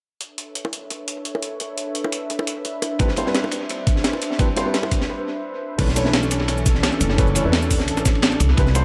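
An overdriven, thumpy electronic kick sits up front in this melancholic, lush excerpt of liquid drum and bass, arriving at 3.0 seconds alongside a crunchy second breakbeat kit with dark cymbals, a high-tuned snare and a rolled-off top. From the opening, a gritty, compressed sampler-style breakbeat kit with overdrive and tape echo carries crash, hi-hat, shaker and a medium-tuned snare. Tight, high-tuned bongos played with hard hands add close, dry accents until 4.9 seconds. A detuned sawtooth pad with chorus holds soft-attack chords under a filter sweep, and a felt-muted upright piano, mellow and intimate with audible action noise, joins with echoing accompaniment. After a short break, the drop at 5.8 seconds brings in a woody pizzicato upright bass on gut strings, all within an echo-heavy mix of light reverb and small room ambience.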